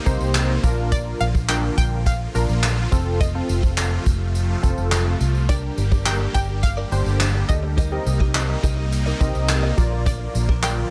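Dance-pop with an energetic, bittersweet mood, this excerpt sets lush, detuned supersaw chords with phaser and sidechain pumping against mellow, chorused analog keys, a dark, foam-muted fingered bass, and an up-front brush kit of punchy kick, snare, hi-hat and handclaps, with a jingly tambourine in the background. A round, full-bodied analog pluck carries the melody from 0.9 s, colored by chorus and delay, and a bright, clean, direct-recorded electric guitar riff joins quietly behind it at 5.5 s. The harmony moves through Cm7, Bb, F and Gm, all heard in a small room ambience.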